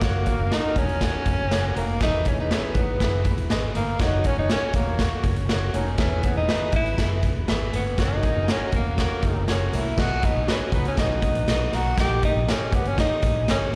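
An up-front tenor saxophone with vibrato and scooped notes carries the melody in this joyful, uptempo 1960s-style soul cut, backed by a mellow, loose horn section that stops at 11.1 s, a brilliant grand piano in the background, a very quiet, twangy, slightly broken-up guitar riff, a dark, foam-muted fingered bass and a gritty, punchy garage drum kit, captured as a live gig through the venue's PA with recital-hall reverb and a faint mains hum.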